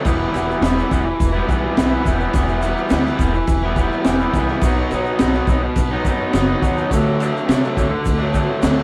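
Raw and swaggering, this short garage rock excerpt at 105 BPM in E minor drives a bright, overdriven, double-tracked electric guitar riff up front over a crunchy, gritty breakbeat kit with a punchy kick, high-tuned snare and dark cymbals, a woody, growly pizzicato upright bass with tube saturation, and a grainy tube shaker in the background, all captured live in one stone room as the chords move from Em to B at 4.6 seconds and D at 6.9 seconds.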